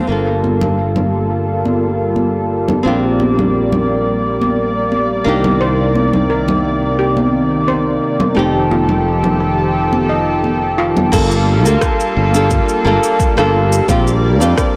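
A blown-out, overdriven sound with a moderate plate reverb frames this short cut from a longer sunset chillout piece in G minor, relaxed and wistful at 87 BPM in a straight 4/4. A lush, thick unison pad with a soft attack and chorus sits up front holding sustained chords through Gm9, Bb69, Cm9 and F9, while a filter sweep runs over an analog synth pad until 11.1 seconds, and a fingerpicked nylon-string guitar adds classical accompaniment soaked in tape echo. A growly, bright fretless electric bass with tube saturation and subtle chorus anchors the low end, and hard-handed, ringing congas carry the percussion. A shimmering, metallic steel pan with vintage 12-bit sampler grit and tape echo plays arpeggios in the background from 5.6 to 11.1 seconds. At 11.1 seconds the congas and steel pan drop out as an overdriven deep house kit of crash cymbal, rim click and shaker arrives with a deep electronic kick, giving the closing stretch a produced pulse.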